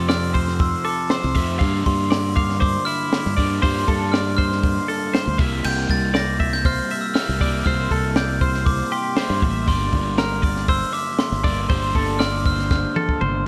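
This short excerpt of math rock and midwest emo opens with a mellow, bell-like glockenspiel melody struck with soft plastic mallets, ringing above a bright, twangy twelve-string electric guitar that plays clean, picked arpeggios bathed in spring reverb. Beneath them, a double-tracked overdriven guitar picks a crunchy riff in the lower register, while a round, punchy fingered electric bass anchors the low end. A compact cocktail drum kit enters at 0.1 seconds, and its acoustic, small-room sound is dark and smooth with a rolled-off top and a high-tuned snare, set up front in the mix. At a straight 119 BPM in 4/4, the intricate, wistful passage moves through Fmaj7, Gm11 and C7sus4 under a light reverb, and the drums close it with a fill from 12.7 seconds.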